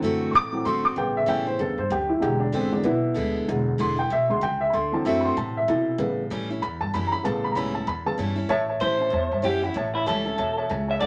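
Rockabilly at a swung 191 BPM in A mixolydian, retro and rollicking, with a dark, mellow upright piano up front taking a solo until 8.5 seconds over bright dreadnought acoustic guitar, thumpy gut-string upright bass and dominant-seventh chords, before a twangy, slightly broken-up lo-fi electric guitar enters with the melody at 8.8 seconds, all in a wet studio reverb in this short excerpt.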